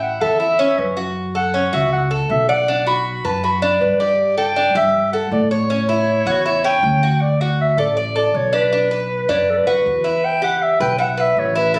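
Latin music in the Cuban son and guajira tradition, this sunny, danceable passage in straight four has been lifted from a longer piece and heard as recorded on a phone in the room, with a moderate studio reverb around it. A breathy clarinet carries the melody up front in a mellow, jazz-style solo, with soft attacks, scooped notes, vibrato and a smooth top. Beside it, the Cuban tres is also up front, picking arpeggios on its double strings with a metallic, acoustic ring and some octave-doubled strings. Underneath, a woody, thumpy upright bass with gut strings plays pizzicato bass lines at a lower level. The harmony travels from A through F#m, Bm, Gsus2 and A6, then at 7.2 seconds a new section lands on D before moving to Bm and Em, with all three parts playing throughout.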